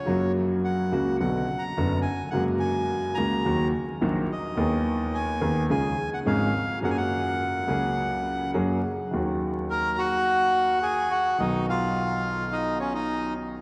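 A rubato 4/4 pulse at 106 BPM carries this nostalgic, elegant tango fragment in F# major, where a reedy, dark, boxy bandoneon sings the melody up front over a smooth, vintage grand piano's accompaniment, the pair bathed in a vast cathedral reverb with vinyl crackle before the harmony turns to Eb minor at 9.1 s.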